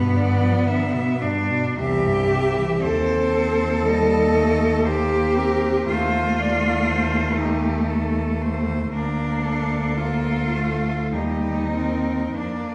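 Serene and tender, this lyrical classical passage for cello ensemble, cut from a longer piece, unfolds slowly at 45-60 BPM in a rubato 3/4 with A4 tuned to 442 Hz. Four bowed cellos with vibrato play throughout: a focused melody on top, a smooth second line just beneath it, a rich accompaniment in the middle register and a close, clear bass. Their harmony moves from G7 through C, Cm/Eb, F7/Eb and Bb/D to Cm7/Eb, and the ensemble sits in the lush reverb of a recital hall, heard from further back in the room.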